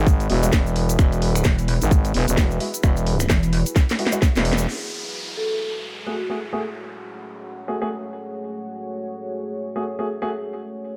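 A swaggering, bouncy bass house fragment opens on a drop where a growling FM bass, a briefly pulsing pluck wobble bass, a tight up-front kick, a cracking garage kit, a grainy shaker and dark grand piano stabs ride over a deep, moody ambient pad, then after a drum fill and band accent the groove falls away at 4.7 seconds into a downlifter, a metallic ringing vibraphone phrase and a filter sweep on the mellow piano.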